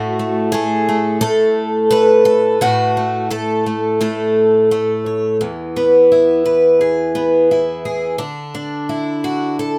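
A picked twelve-string acoustic guitar opens alone, its bright, octave-doubled shimmer of fresh strings sitting up front in this short folk excerpt at 86 BPM in straight 4/4. The peaceful, warm mood rests on F#m/A before the harmony moves to E at 5.4 seconds and settles on Dsus2 at 8.2 seconds, the guitar ranging from E2 to C#5. Close, detailed microphones and light reverb keep every string's ring clear.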